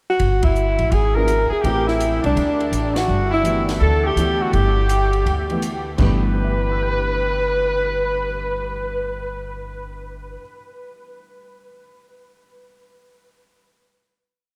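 Small-group swing and bop jazz with a relaxed, warm mood, where a mellow, vibrato-tinged alto saxophone states a motif-based melody up front, doubled in unison by a clear, punchy trumpet with scooped notes, over woody pizzicato upright bass in a two-feel, a compact cocktail kit with dark cymbals and a high-tuned snare that stops at 6.1 seconds, and a dark, intimate baby grand piano entering at 1.2 seconds with syncopated drop-2 comping, all bathed in a huge ambient reverb of a vast, echoing space, with band accents at 0.4 and 2.9 seconds before a final chord rings out.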